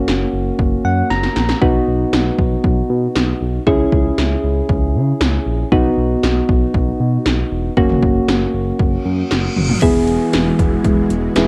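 Wistful yet bright, this synth-pop fragment opens with soft, round electric-piano-like synth keys bathed in chorus, a smooth, dark synth bass, and punchy 80s electronic pad drums with gated reverb on the snare and toms and a metallic, overdriven edge, the keys and drums both adding early fills. At 9.0 seconds a reverse cymbal and downlifter enter faintly, and at 9.8 seconds a lush, vintage string machine ensemble enters with sustained chords over an Eadd9 as the section shifts. The whole piece sits in light digital ambience with the character of a home cassette recording.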